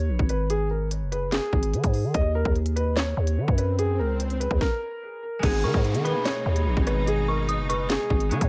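An echo-heavy mix with light reverb gives this menacing, dark drill piece a murky depth, and it sounds cut from a longer track. A dark, mellow concert grand piano carries the melody from the start, intimate and vintage in tone with audible action noise, muffled by a low-pass filter and trailed by dub echo. Beneath it, a growling, buzzy 808-style bass hits with a saturated punch, while the electronic drill kit drives a half-time feel with a hard-clipped kick, sharp snare, crisp hats, rim clicks, handclaps and crash, all sitting tape-warm and up front. An electronic swell rises in the background, and a stop at 4.6 seconds clears the way for the second section at 5.4 seconds. There, a ringing concert harp joins under the same filtering and echo, a distant, lush symphonic string section holds bowed chords with vibrato, and from 5.6 seconds an eerie, inharmonic FM bell adds a chorused, detuned line high above.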